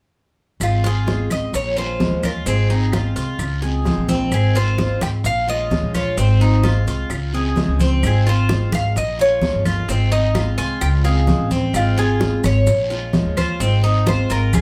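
Warm and relaxed, this short section of a longer Cuban son and guajira piece moves in an easy, straight four, with the full band playing together live in one room with a moderate studio ambience. A picked Cuban tres carries the melody from 0.6 seconds with a metallic, double-strung ring, while a second tres joins at 0.8 seconds with gentle arpeggios lower down. A jumbo steel-string acoustic guitar fills in full-bodied picked accompaniment, with an occasional finger squeak. The pizzicato upright bass sits up front with a woody tone. Bright, hard-handed congas lead the percussion, with round, low-tuned bongos, woody claves, a raspy guiro and grainy, mellow maracas tucked into the background. The harmony circles steadily through Ab6, Bbm7 and Dbmaj7, giving the groove a gently swaying, unhurried character.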